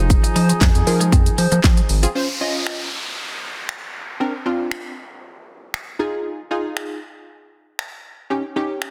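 Dance-pop with a bittersweet, energetic mood, this excerpt opens with a full layer of sidechain-pumped parts: detuned sawtooth chord stabs with chorus, a classical-style brass section with light vibrato, a round square-and-sine analog bass, and a mellow plucky unison lead tucked in the background beside a twangy, clean twelve-string electric guitar riff. At 2.1 seconds the brass, bass and guitar stop, leaving the up-front stabs and a layered electronic drum kit, with its punchy kick, fat soft-clipped snare, snaps, claps, hi-hat and shaker, to carry on as an electronic downlifter sweeps through from 2.1 to 6.3 seconds. The dense, heavily limited master sits in light reverb.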